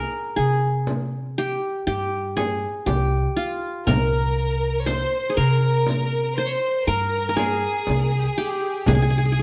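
A bright-edged qanun played with fingerpicks and a woody, thumpy pizzicato upright bass open this warm, festive Arabic maqam ensemble piece in 10/8. A frame drum joins at 0.9 s. At 3.9 s three parts enter: a rich, focused solo violin in the background, a smooth, even symphonic violin section with vibrato, and a close, dry riq with bright jingles, all heard as a live band in one wet stone room.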